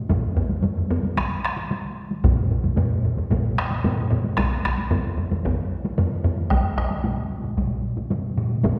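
Taiko drums struck with hard and heavy sticks open this ceremonial, powerful fragment of Japanese traditional ensemble drumming at a straight 112 BPM in 4/4, three close, up-front drum parts sounding together from 0.1 seconds and a fourth heavy-stick taiko joining at 2.2 seconds, all ringing out into the long, wet reverb of a concert hall.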